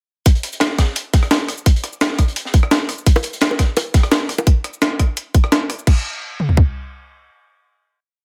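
An overdriven drum and bass kit with a tight kick and toms leads this dreamy, lush drum and bass piece at 171 BPM, joined up front by a compressed, gritty sampler-style breakbeat kit rolling through cabasa, rim clicks, hi-hats, a high-tuned snare and crash, with a dark, saturated looped break with edits tucked in the background and close, dry, high-tuned bongos arriving at 3.2 seconds, before the drop gives way to a final hit at 5.9 seconds.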